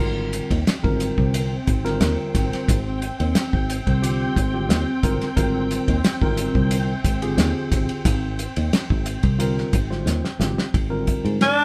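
A straight, even 4/4 groove drives this bright, soaring excerpt of electric jazz fusion, with a damped 70s drum kit sitting up front on hi-hat, kick, snare and ride, its fat snare, tight kick and dark cymbals giving it a dry, rolled-off character. Underneath, a fingered electric bass sounds growly and foam-muted, direct and amped. A clean tine electric piano, heard through a combo amp, carries the accompaniment, while a soft string machine holds silky, warbling sustained chords with slow attack, long release and an ensemble chorus. The harmony rests on Abmaj7 before a drum fill at 10.1 s leads into Abmaj9#11. At 11.4 s, just as the clip ends, a raspy, growling tenor saxophone steps up front with the melody, and a pure, vibrato-laden silver concert flute joins distantly in the background on a second line, all within a moderate room reverb that suggests a band playing live together.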